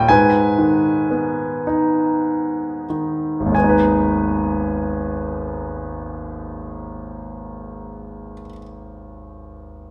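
Classical solo piano in G# minor, this brief lyrical passage drifts at a slow, rubato pace in 6/8, roughly 30-42 beats per minute counted in dotted quarters, with a reflective, wistful mood and a slowing in its opening 3.5 seconds. The concert grand sits up front and sounds clear and polished, spanning G#1 to G#5 with deep bass, long sustain and audible action noise that lends an intimate presence. It rings within moderate recital-hall reverb, and the music moves into a second section at 3.5 seconds before the cut at 9.9 seconds.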